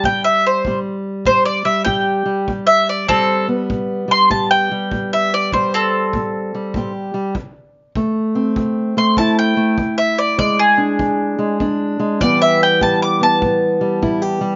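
Acoustic country blues with a mournful, soulful swing, caught in a short cut from a longer piece. A bowl-back mandolin carries the melody as a solo across the whole passage, its double strings sounding warm and up front with a slapback echo, while a fingerpicked archtop guitar gives a dark, boxy accompaniment through Am9, Fmaj7, E7 and Asus2. A distant, roomy kick drum with a punchy thump and brushes sits far behind them until 14.2 seconds, in a dry, dull-topped mix.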